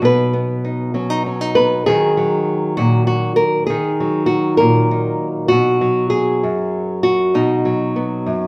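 A dark, small-sounding nylon-string guitar, fingerpicked and up front, carries this hopeful, nostalgic folk excerpt alone in 6/8 at 66 BPM, moving from B to D#m7 and back to B within the moderate reverb of a recital hall.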